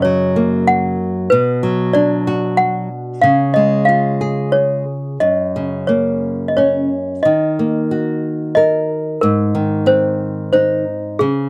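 A dry, close recording in a 1970s studio style, touched with light reverb, frames this brief excerpt of a gentle, tender children's lullaby in a rubato triple metre. A clanky, bell-like toy piano with plastic hammers carries the melody, its bright tone slightly out of tune. A small, fingerpicked nylon-string guitar sits up front with a warm accompaniment, and both parts play from 0.0 to 11.5 seconds.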